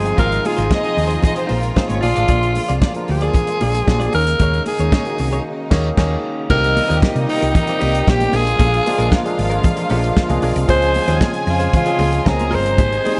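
Disco with a glamorous, sultry mood, this excerpt from a longer piece is led by a raspy, gritty alto saxophone sitting up front with a pop-style vibrato. Beneath it, a barky tine electric piano, lightly overdriven through a combo amp, and a very quiet, twangy clean guitar recorded direct fill out the accompaniment. A hollow-body short-scale bass gives a dark, round low end, while a soul drum kit with a tight kick and dark cymbals pumps in a snug booth, joined by bright, high-tuned congas in the background. A clear, focused string section holds sustained chords behind everything, and a lush, distant violin section adds a smooth second line that drops out at 2.3 seconds and returns at 6.5 seconds as the music moves into its second section. The band hits a shared accent between 5.4 and 6.5 seconds, and light studio reverb gives the whole a polished, gently rolled-off sheen.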